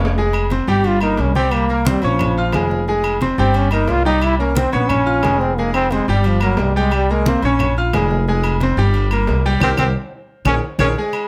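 A drum fill opens this fiery, danceable salsa excerpt as a brilliant, polished grand piano, a growly upright bass played pizzicato, low-tuned congas with a thick skin, and ringing timbales and agogo bells sounding distant in the background come in together, with woody claves joining at 0.3 seconds. From 0.7 seconds a punchy, close-miked trombone takes a pop-style solo up front, its vibrato riding over a cycle of chords that moves through Fm and Bbm7. A band accent hits at 9.6 seconds, and a final drum fill carries the passage toward its cut.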